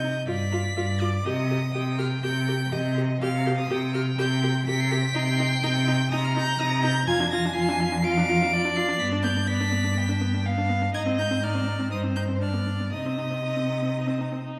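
Bathed in the reverb of a recital hall, this dramatic, urgent passage from a quick classical-period string quartet movement sets a clear, smooth first violin singing high above a rich, distant second violin line, a warm viola accompaniment with expressive portamento, and a prominent cello bass, all bowed with vibrato.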